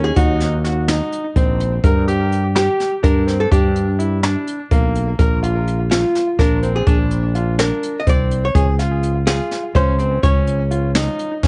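A brushed jazz drum kit sits up front, its high-tuned snare, boomy kick and hi-hat sounding airy and polished in a small room, coming in at 0.2 s and carrying a cassette-tape grain. This tense, intricate progressive instrumental is a fragment of a longer piece, moving in 7/8 at 250 BPM counted in eighths with a straight feel, and tuned to A4 = 436 Hz. A fretless electric bass, direct and growly, also sits up front, while a bright concert grand piano spins brilliant arpeggios with a deep low register, colored by cassette tape and tape echo. Over them, a miked and amplified hollow-body archtop guitar plays the picked melody in a dark, clean, compressed tone, also with a tape character. The harmony moves from Ebm through Gm and Bb to Db at 8.6 s. The home cassette recording is dry, with its top end cut off at 10.3 kHz.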